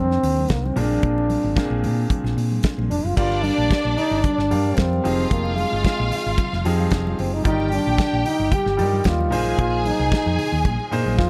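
Joyful and glamorous, this brief disco excerpt at 112 BPM features a mellow, present trombone singing the melody with light vibrato and scooped notes over clear, intimate grand piano with audible action noise, a dark, round hollow-body electric bass, a dry, up-front 70s drum kit with dark cymbals and a tight kick, very quiet bright congas, and a lush, distant bowed string section that joins at 3.2 seconds, all set in studio reverb over chords moving from Cm7 to Bb9sus4.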